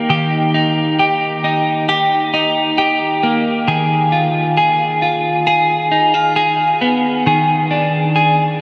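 A dreamy mix soaked in a huge, wet ambient reverb surrounds a lone clean electric guitar, dark, picked and compressed, sitting up front with subtle chorus and tape echo as it moves from Eb to Abm6/Eb to a rootless Bb7/Eb in this floating, blissful dream pop fragment in Eb major at a slow 67 BPM in straight 4/4, cut from a longer piece and lasting 8.6 seconds.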